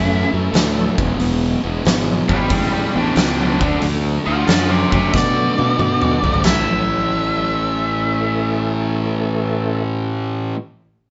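A swaggering, driving blues rock and southern rock excerpt in A major opens at 92 BPM with a swung 4/4 feel, as a dark octave-fuzz lead guitar carries the melody over a double-tracked fuzz guitar riff and a growly, bright fingered bass pushed up front. Underneath, a very quiet second lead through a small cranked amp traces a second line while a thick, overdriven tonewheel organ with key click and slow rotary speaker holds sustained chords. An oversized, low-tuned drum kit with a punchy kick, saturated china cymbal and pumping room sound enters at 0.5 s, rolls through a fill from 5.1 s and drops out at 6.7 s as the chords move from A through E and D back to A. The band plays live in one room with light reverb and a muffled top end. The fuzz riff and bass carry on past the other parts, the bass stopping at 10.5 s and the riff at 10.6 s.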